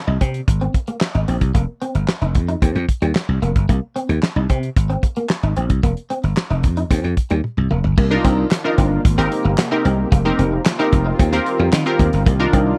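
Early-eighties boogie funk with a slick, danceable feel, this excerpt opens with a bright, twangy clean electric guitar riff carrying ensemble chorus over a punchy, growly thumbed slap bass and a damped 70s drum kit with a fat snare, tight kick, dark cymbals and handclaps, all dry and close. After a drum fill at 7.4 seconds, the harmony shifts into richer extended chords as a detuned, ring-modulated polysynth comp with a filter sweep enters up front at 8.1 seconds, joined by a thick, slow-attack unison pad with chorus sitting in the background.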